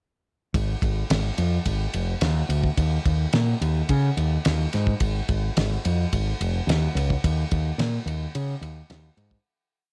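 At 0.5 seconds a growling, overdriven fingered electric bass and a damped 70s drum kit enter together, launching a hypnotic psychedelic rock groove in straight 4/4. The bass sits up front with a direct, amped tone, driving steady eighth notes across a range from F1 to Db3. The acoustic kit plays a breaks-style groove on kick, snare and ride cymbal, with a tight kick, a fat snare and a rolled-off top end that keeps its sound dry and vintage. Both parts stay close and present in a room with little reverb, giving the short, kaleidoscopic piece an intimate, warm feel. The groove holds steady until a fade-out begins at 7.2 seconds and carries it away by 9.4 seconds.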